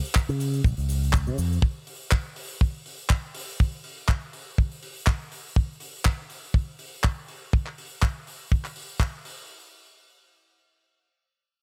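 An up-front, tight acoustic kick drum drives this sunny, feel-good nu-disco passage, cut from a longer piece, at 122 BPM in Db major with a lightly swung 16th feel, alongside a dry funk drum kit with handclaps and hi-hat, a close egg shaker in the background, and a bright fingered electric bass through an envelope filter that enters at 0.3 s, with the shaker and bass both falling silent at 1.6 s, and little reverb throughout.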